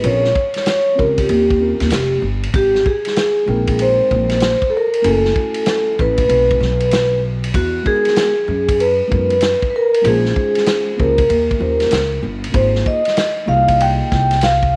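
A cool, relaxed jazz-hop groove at 96 BPM in Ab major opens with all four parts at once under a bed of vinyl crackle: a ringing, metallic vibraphone played with soft mallets carries the up-front melody with a slow motor vibrato, while a mellow, clean tine electric piano sits further back through its built-in speakers. A woody, thumpy pizzicato upright bass with dark gut strings stands up front beside a natural, small-room vintage kit with dark cymbals, a medium-tuned snare and a punchy kick, all swung on the 16ths. The rich jazz harmony moves from Bbm7 and Eb13 through Abmaj9 and a rootless Emaj9#11 to settle on Ab6 by 12.5 seconds, in a short cut from a longer piece with light reverb.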